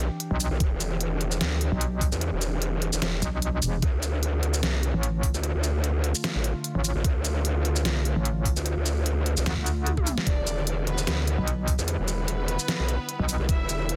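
An evolving wavetable pad with chorus, reverb and sidechain pumping opens this menacing, heavy wobble dubstep excerpt in E phrygian at 149 BPM in half-time, alongside a growling, formant-filtered growl bass, an up-front dubstep drum kit with deep snare and crisp hats, a metallic FM wobble bass joining at 0.3 seconds and a knocking, overdriven electronic kick, while a drum fill at 9.9 seconds leads into a dark, woody violin section with vibrato and digital delay entering at 10.3 seconds over the dense, heavily limited mix as the chords move from Em7 to Dm and back to Em7.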